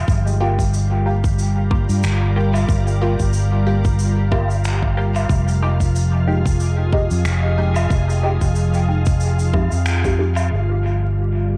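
A soft, organ-like pad of pure, detuned sine tones opens this spacious ambient dub excerpt with sustained chords, shimmering with ensemble chorus and its own reverb, while a growly, up-front fingered electric bass holds the low end. At 0.1 s a tight electronic kick drum arrives, alongside a muffled layer of cabasa, finger snaps and woodblock that sounds like a small, pumping room, low-pass filtered and thrown into dub echo. A nasal, resonant sawtooth chord stab with a filter pluck and a moving notch enters at 0.4 s, coloured by phaser, lush chorus and more dub echo. The deep, unhurried groove carries a gentle swing, with harmony moving from Gm7 to Fm9, and vinyl crackle and light studio ambience sit over the whole recording. After a brief band accent, the pad and the stab both sweep through a filter from 10.5 s as the harmony returns to Gm7 and the fragment is cut off.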